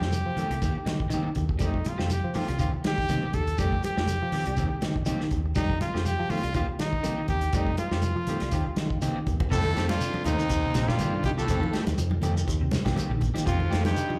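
Afrobeat with a joyful, driving groove, this piece is cut from a longer performance and heard as a live gig through the venue's PA, with light club reverb. An up-front, close-miked trumpet carries the melody with vibrato, scooped notes and a slapback echo. In the background, a clean, hollow-body semi-hollow electric guitar picks arpeggios through analog chorus, while a twangy, slightly broken-up electric guitar adds stabs through spring reverb. A round, dark fingered electric bass and a soul drum kit with dusky cymbals and a tight kick carry the swung sixteenth-note feel, joined by damped congas and a grainy, mellow shekere. The harmony alternates between F9 and Eb6 throughout, and a drum fill at 8.8 seconds leads into a new section at 9.5 seconds, where a punchy, forceful baritone saxophone and a smooth alto saxophone enter in the background with a second line.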